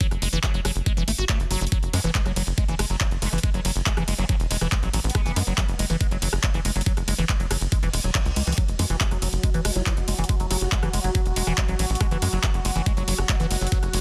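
Psychedelic and driving, this psychedelic trance excerpt rides an overdriven, knocking electronic kick up front and a drum kit with bright hats, handclaps, ride and rim click, beneath a tight, nasal sequencer bass with tube saturation, a squelchy, resonant liquid acid bass riff with phaser, pumping and tape echo, a wobbling, formant-filtered vowel-sweep bass in the background from 1.9 seconds, a reverse cymbal at 7.9 seconds, and an evolving, detuned wavetable pad of sustained chords entering at 8.9 seconds in a dense, heavily limited modern master.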